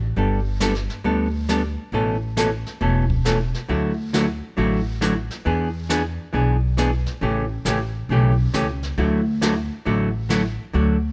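A woody, thumpy upright bass opens this short, swinging cut from a longer western swing number, plucked on gut strings and sitting up front. At 0.2 seconds a dark, clean hollow-body electric guitar joins with picked chords, moving from Gadd9 through Aadd9, Dadd9, E7 and A7 back to Dadd9, while a distant brushed drum kit with a boomy kick sounds from a small, roomy space. The playful feel and light reverb give the trio an easygoing country lilt.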